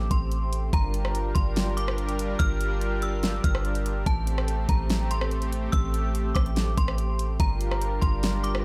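A ringing, inharmonic FM bell melody opens this hazy, melancholic cloud-rap excerpt at 0.0 seconds, floating high over a smooth, detuned sawtooth pad of sustained chords and a deep, boomy 808-style sine bass. The drums arrive at 0.1 seconds, an electronic R&B kit with a knocking kick, fat snare, rim click and warm hi-hats, re-recorded in a small room and placed up front beside the bass. The tempo is 144 BPM in 4/4 with a half-time feel, and the harmony in G dorian drifts between Am7 and Gm7. Chorus and tape echo give the metallic bell its long, decaying shimmer, while the pad carries chorus, tremolo and sidechain pumping. The bass has a fast attack and a mellow noise layer, and the mix is dry with little reverb, keeping the low end close and heavy under the brighter upper parts.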